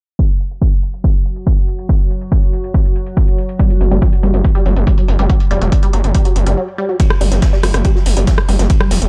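Intense and dark, this driving peak-time techno excerpt at 141 BPM in a straight 4/4 opens on a punchy, up-front kick and a drum kit of metallic hats and rim clicks under a filter sweep, with a deep, moody pad droning in from 1.2 s with chorus and reverb before a brief break at 6.6 s, while a squelchy, resonant blip pluck with phaser and delay and a gritty, saturated sawtooth bass enter around 3.6 s, and a brushed ride and snare sit in the background from 7.0 s as a filter sweep moves over the pluck, all within a dark digital ambience.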